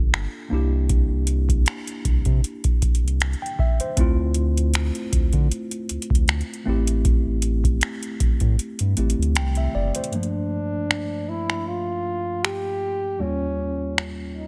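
Contemporary R&B at 78 BPM with a gentle 16th-note swing, this sensual, longing excerpt in G dorian opens on a worn, slightly out-of-tune tine electric piano and a deep, sine-like sub bass with an octave, set over a booming analog drum machine of deep kick, metallic hi-hats and finger snaps. The kick drops out from 8.6 to 10.1 seconds and the bass falls away at 9.9 seconds, shortly before a distant, roomy French horn enters at 10.1 seconds as a mellow, classical-style solo carried by digital delay. The sound is a dense, heavily limited modern master in a digital ambience.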